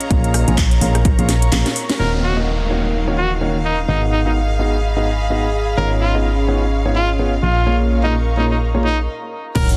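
A swung 127 BPM groove in 4/4 opens this energetic, soulful piano house excerpt in Eb minor, with an overdriven, punchy electronic kick and a layered, tape-warm kit of cracking snare, metallic hats, handclaps, rim click, cabasa, ride and crash that fills and breaks before dropping out at 2.0 seconds. A round, up-front FM bass, a woody upright piano riff with audible action noise, low-pass filtering and dub echo, a dark bowed violin section and a breathy, detuned pad with chorus all pump with the sidechain, while from 2.0 seconds a clear solo trumpet carries the melody through its own dub echo above a background downlifter and sub drop. After a stop at 9.1 seconds, the drums and effects return for an impact at 9.6 seconds, framed by light reverb in a dense, heavily limited modern master.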